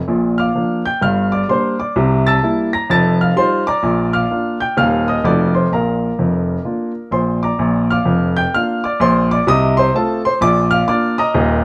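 A clear baby grand piano opens the recording at 0.1 seconds and carries it alone, playing stride jazz with a swinging, exuberant lilt over a steady four-beat metre. The piano sits up front and sounds polished, ranging from deep bass notes up into the high treble. The harmony moves through minor seventh and dominant chords, including a ninth and a flat-nine colour, before settling back home. The music falls into two matching sections, the second starting at 7.6 seconds, and the piano plays on until 11.6 seconds. A moderate studio reverb and a dark, warm production frame the clear instrument, and the short passage is cut from a longer piece.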